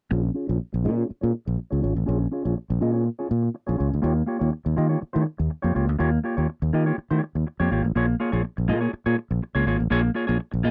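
Danceable and glamorous, this short disco excerpt at 122 BPM in Bb dorian sets a dark, scooped clean electric guitar under a filter sweep against a growly, overdriven fingered electric bass, both up front in a dry, close 1970s-style studio sound as the chords move from Bbm7 to Eb9 and back.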